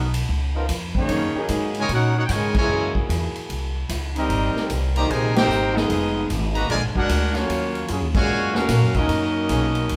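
A swinging 4/4 groove drives this sultry, brassy big band jazz, with a punchy kick, medium-tuned snare, hi-hat, ride and crash from a natural-sounding drum kit beneath a woody, growly pizzicato upright bass. A bright, up-front trumpet section carries the melody while a trombone section with light vibrato plays a second line and another, soft-attacked trombone section holds sustained chords in the background, the whole band hitting accents at 2.5, 5.3 and 8.1 seconds. Cut from a longer piece, it sounds like a band playing live together in a large studio with moderate reverb, moving through rich extended jazz chords.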